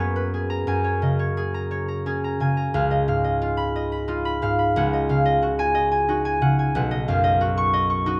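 The sound is close and detailed, with the microphones placed near the instrument and very little reverb, so every string is heard with clarity. This short excerpt from a longer classical piece features a solo concert harp in F# major, fingerpicked and ringing, sitting up front in the mix. The mood is serene and dreamy, moving at a gentle 60 dotted-quarter beats per minute in 6/8 with a free, rubato feel. The harp spans from low B1 up to C#6, drifting through lush extended harmonies: G#m9 over F#, F#add9, C#9 at 2.7 seconds, D#m11 over C#, and Badd9 at 6.7 seconds. The harp plays throughout the 8.2 seconds.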